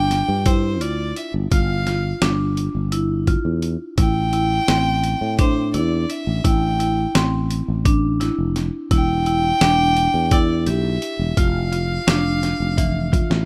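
Driving along in 7/8 at 170 BPM in eighths, this bright progressive instrumental opens on a growly fretless electric bass that sustains low in the mix's foreground, sounding together with marimba and violin, while a gritty, compressed sampler-style kit with a thumpy kick and fat snare, roomy and up front, joins a tenth of a second later. A marimba struck with medium hard mallets spins warm arpeggios beneath a single bowed violin whose biting, nasal, earthy tone carries the melody with light vibrato and an airy bow. The harmony moves from G5 to Am7 to Em7 before dropping away at 11.4 seconds, and a drum fill at 12.8 seconds closes this short cut from a longer piece, all in a dry, rough home-demo sound.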